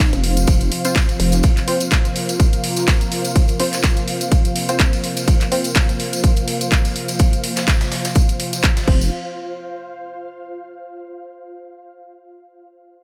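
A swung sixteenth-note 4/4 groove drives this bouncy, aggressive bass house cut, built on a punchy, up-front electronic kick, a tape-warm house kit of crash, handclaps and hi-hat, a jingly tambourine, and a gritty, overdriven sampler-style soul kit of ride and snare tucked in the background; a dark, nasal vowel-sweep wobble bass sits up front only briefly at the start and again at the very end, a bright, band-passed sawtooth chord stab with tape echo and a filter sweep enters at 0.8 seconds, a sweeping resonant pad with vintage 12-bit sampler grit pumps beneath, and an ethereal, mellow airy pad carries on alone after 9.1 seconds.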